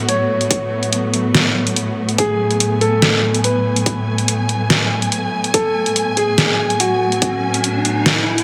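Heavy and menacing, this short cut from a longer heavy wobble dubstep piece moves at 143 BPM in 4/4 with a half-time feel, a light swing on the sixteenths, and a home in F# minor, opening on an F#madd9 chord. A dark, up-front studio string section holds lush bowed chords with expressive vibrato and a smooth top, pumped by sidechain compression. Alongside it, a mellow baby grand piano with a vintage character and long sustain plays a melody in a narrow upper-middle range, trailed by a digital delay. The dubstep kit drives the groove with hi-hat and a deep snare, layered and produced and placed up front. A punchy electronic kick enters at 0.5 seconds and stops at 7.3 seconds, both kit and kick re-recorded in a large room. An electronic riser arrives at 6.7 seconds, all within a moderate, lush hall reverb.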